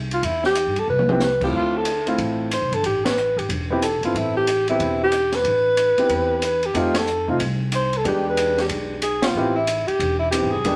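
This small-group swing and bop jazz excerpt has a cool, moody feel and moves at a brisk 184 BPM in 4/4, swinging its eighth notes in A minor. Out front, a breathy alto saxophone carries the melody with vibrato and a soft subtone, while a pizzicato upright bass with steel strings lays a dark, woody foundation underneath. An open acoustic drum kit with shadowy cymbals, a high-tuned snare and a boomy kick plays a short fill at 0.9 seconds, and a warm, intimate upright piano joins at 1.1 seconds, its action noise audible in the comping. The band hits accents together at several points as the harmony passes from a rootless Am9 through Dm9, F7 and a tense E7#9 before settling back on Am9. A moderate club reverb gives the group a close, natural sense of a small room, and the passage is cut from a longer piece.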